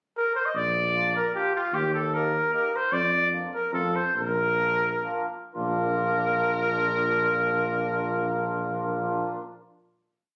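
A trumpet opens with a short pickup at 0.2 seconds, its warm tone carrying a light vibrato and sounding distant and roomy even while it stays up front, before the tuba arrives at 0.5 seconds and the accordion at 0.9 seconds. This is a complete, jolly and bouncy alpine folk piece for a small alpine dance band in 3/4 and Bb major, moving between 115 and 153 BPM. The trumpet carries a motif-based melody built in period phrases in a classical style, while the mellow tuba, also lightly vibrato-tinged, marks root and fifth on the main beats. The accordion's reedy voice, with slow beating and a tone-chamber softness, fills the off-beats with triad chords. The tempo slows from 2.9 to 5.5 seconds as the harmony moves from Bb/F through F back home to Bb, and the trio settles on a held final chord. The sound has the modest room of a phone recording, set in moderate studio reverb with compression.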